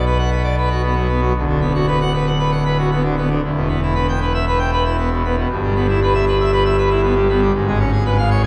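Moving in a straight 4/4 at 117 BPM, this classical organ toccata surges forward with a stormy, dramatic urgency. A single pipe organ plays alone on full organ for the whole 8.5 seconds, its mixtures lending a brilliant, majestic edge and its romantic voicing spanning from a deep D1 up to G5. The harmony moves from B minor through Em and Em/G before landing on a tense C#7/G# at 7.5 seconds, a chord that leaves the passage hanging as it is cut from a longer piece. The organ sits up front in the sound, yet the listener seems placed further back in a church whose wet reverb rings for 3.2 seconds. Tuned slightly high at A4 = 441 Hz, the recording captures the grandeur of its church setting.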